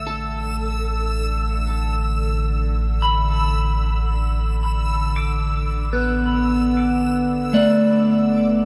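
Ambient in free time, melancholic and reflective, this short passage cut from a longer piece sits in a vast, echoing space with a faint mains hum. An up-front, dark electric guitar at the edge of break-up picks arpeggios through phaser, tape echo and shimmer reverb, over a round, deep sine sub bass, a tense, string-like bowed drone that fades in with vibrato and ring modulation, and a reversed, dreamy granular texture swelling high above. The harmony rests on A5 before moving to Gsus2 at 7.7 seconds.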